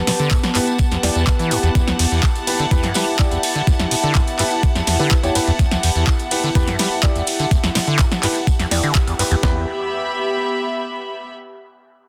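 A wobbling, lo-fi pad and a bowed studio string section open this gritty, driving acid house excerpt on an E minor chord, with the pad's detuned square and triangle tones sitting dark and nostalgic in the background under chorus and its own reverb. Almost at once a squelchy, resonant sawtooth acid bass arrives with a filter sweep, overdrive, subtle chorus and dub echo, and it pumps against the kick along with the pad and strings. Two up-front drum machines drive the groove: a sampler-style 12-bit unit with a thumpy kick and medium-tuned snare, and an analog electro box supplying handclaps, metallic hats, ride cymbal and a punchy snare, both tape-warm and re-recorded in a small room, while a jingly tambourine sits further back. Boxy, intimate grand piano stabs with audible action noise and short sustain ring out through dub echo. After a full-band accent at 9.0 seconds the pad, rhythm parts, bass and piano drop away, leaving the earthy strings with their light vibrato and smooth top to carry on alone until 11.3 seconds. 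The mix has light reverb and a dense, heavily limited modern master.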